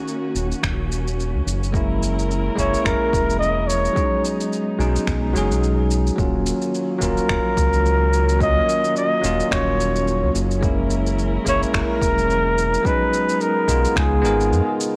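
Sunset chillout excerpt in Eb minor at 108 BPM with a relaxed, warm swing, where a breathy, intimate flugelhorn carries the melody through digital delay over a bell-like tine electric piano, a round, deep analog bass, overdriven electronic kick, shaker and finger snaps, and a dark, lush string section in the background, all colored by worn cassette tape with warbly pitch drift and light digital ambience.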